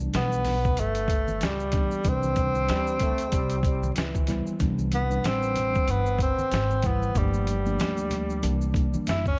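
Jazz-hop with a smooth, cool mood, moving at 94 BPM in C major over a swung 16th-note groove. A gritty, pitched-down boom bap drum kit with a thumpy kick, a woody pizzicato upright bass, and a mellow tine electric piano playing Cmaj7 before shifting to Gm9 and C7 form the bed, while maracas and congas sit dry in the background. A breathy, whispered tenor saxophone with scooped notes and vibrato sits up front and takes a solo from 4.6 seconds, after a plunger-muted trombone adds a wah-wah second line from 2.7 seconds, all in an echo-heavy mix with tape echo on the saxophone, piano and percussion, plus vinyl crackle.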